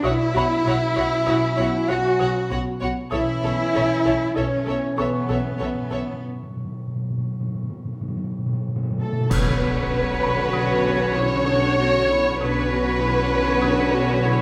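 Set in a wet recital hall, this ominous, uneasy cut from a longer suspense film score moves at 97 BPM in 5/4 in B minor. A woody, dark marimba riff and lush bowed strings sit underneath: a violin melody with a focused, smooth top, a second violin line, viola accompaniment, and expressive cello and double bass sections carrying the bass. A mellow clarinet and French horns hover in the background, with very quiet trombones and a long-sustaining grand piano adding texture. Round, up-front timpani enter at 3.1 seconds with a fill through a break, and at 9.3 seconds dark, dry clash cymbals and concert bass drum hit a band accent alongside a huge, bright but very quiet impact as the Bmadd9 harmony returns.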